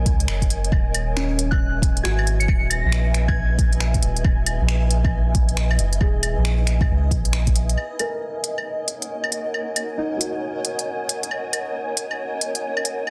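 Wistful and ghostly, this excerpt of future garage moves at 136 BPM in 4/4 with a swung sixteenth feel, set in Eb phrygian. A cloudy, evolving granular pad sustains chords throughout, its blurred, detuned tone roughened by vintage 12-bit sampler grit and pumping against the sidechain, while an airy, wind-like tuned noise texture breathes softly in the background on a single high note. Up front, a round, soft dub sub bass pumps beneath the harmony of Ebm7 and Dbm7/Eb, joined from 0.1 s by a deep, tape-warm electronic kick and an organic electronic kit of claves, finger snaps and smooth hats, its snare softly clipped and the drums re-recorded in a large room. A dark, woody upright piano enters at 1.2 s with delayed, pumping accompaniment, and a pure FM bell melody, shimmering with chorus, phaser and tape echo, rings briefly high above. The kick drops away at 7.5 s and the sub bass follows at 7.8 s, leaving the pad, piano, noise and lighter percussion to drift on Ebm7 in a dense, heavily limited mix with light reverb.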